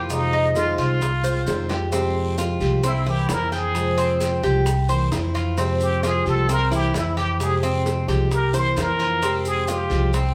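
Cuban son in the guajira style, this nostalgic, warm excerpt in F minor moves at 132 BPM in a straight 4/4, with a brief fill at 1.5 seconds leading into a jazz-style muted trumpet solo at 1.9 seconds over chords that alternate between Fmadd9 and C7. The up-front trumpet with plunger mute is brilliant and forceful, with wah-wah colour and light vibrato, while a woody, thumpy pizzicato upright bass on gut strings anchors the low end and a bright, picked plugged-in steel-string acoustic guitar supports the harmony. A metallic Cuban tres with doubled strings plays arpeggios, and tight, high-tuned bongos, a raspy guiro and grainy maracas sit in the background, all captured as a band playing live in one room with a wet, large studio reverb.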